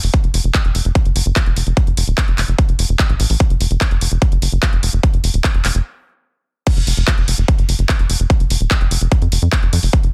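A punchy, overdriven electronic kick drum sits up front in this psychedelic trance cut, driving a straight 4/4 pulse at 147 BPM with an alien, hypnotic mood. Beneath it, a tight sequencer bass ranging from Eb1 to F2 blends sawtooth, square and triangle tones into a dark filter pluck with a fast attack and a decaying tail, also placed up front. A layered big-room dance drum kit adds crash cymbal, handclaps and hi-hat, its overdrive and small room reverb giving the kit a gritty edge. After a stop from 5.9 to 6.7 seconds, the drop arrives at 6.7 seconds and runs to the end of the fragment at 10.1 seconds. The mix is dense and heavily limited, with little reverb overall, and the clip is cut from a longer piece.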